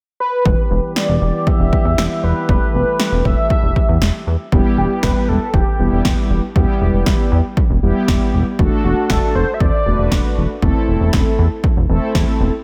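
Cool and nocturnal, this synth-pop excerpt features a bold, detuned octave-doubled sawtooth lead carrying the melody through chorus, phaser and analog delay, its filter sweeping between 0.5 and 4.5 seconds over the sustained chords of a mellow brass ensemble, while a glossy pulse-width chorused synth bass and a punchy, up-front analog drum machine drive underneath, and at 4.5 seconds a dark, round, brassy synth brass with vibrato enters as accompaniment, set in a dreamy, reverb-soaked hall mix.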